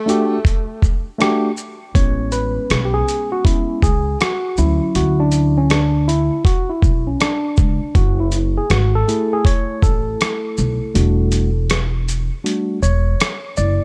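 Smooth and warm, this jazz-hop excerpt settles into a swung hip hop groove. A breathy tenor saxophone opens with a brief, clear phrase colored by vibrato, subtone and scooped notes, trailed by a slapback echo, before falling away at 1.2 seconds. A worn, slightly out-of-tune tine electric piano, heard through its built-in speakers, sits up front throughout and takes a solo from 2.0 seconds over rich chords such as Amaj7, Dmaj9 and F#m9. The dusty sampler-style kit of hi-hat, rim click, shaker and a thumpy kick is compressed and gritty with overdrive, sounding re-recorded in a small room, and the kick drops out from 11.0 seconds. A woody, growly pizzicato upright bass joins at 2.0 seconds, while a digital ambience surrounds the mix.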